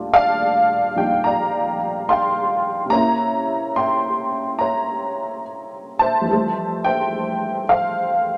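A jangly, detuned upright piano sits up front in a moderate club reverb, its woody, vintage tone giving this short solo jazz fragment, cut from a longer piece, a natural, lived-in character. The mood is warm and relaxed, moving at an easy 72 BPM in 4/4 with a swung eighth-note feel. The honky-tonk piano plays alone across the full 8.4 seconds, ranging from Eb2 up to C6 in the key of F major. Its harmony opens on a lush Ebmaj9#11, shifts to a tense C7b9 at 2.9 seconds, and settles onto Fmaj9 at 6.3 seconds.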